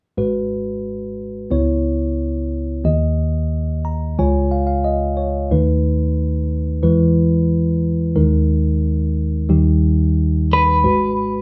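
This acoustic folk-pop ballad moves at 90 BPM in 4/4 with a straight feel, set in G# harmonic minor and tuned slightly sharp to A4 = 441 Hz, carrying a melancholic, reflective mood. A tine electric piano carries the accompaniment from 0.2 seconds, its clean tone heard through built-in speakers and spanning a broad range from G#1 to A#5. The chords travel from G#m7 through C#m7, D#, C#, B7/D#, E and D#sus4 before landing on D# and returning to G#m7 at 10.8 seconds. Near the close, at 10.5 seconds, a picked, compressed clean electric guitar enters with a single B4 melody note coloured by harmonic tremolo. Both instruments sit up front with a warm character, while a wet studio reverb places the listener further back in the room. The passage is cut from a longer piece.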